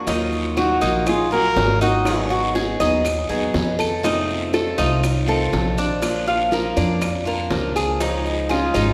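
Warm and nostalgic, this short Cuban son and guajira excerpt in Eb minor moves at 121 BPM, with a bright picked steel-string acoustic guitar and a metallic, double-strung Cuban tres laying down accompaniment and arpeggios over a dark, thumpy pizzicato upright bass on gut strings. Up front, a trumpet with light vibrato sings a brief melody from 0.6 to 2.3 seconds, shadowed by a fingerpicked nylon-string guitar, complete with finger squeak, before both return at 8.5 seconds. Round, low-tuned bongos, a raspy guiro and grainy maracas sit in the background alongside very quiet woody claves, all bathed in a lush hall reverb.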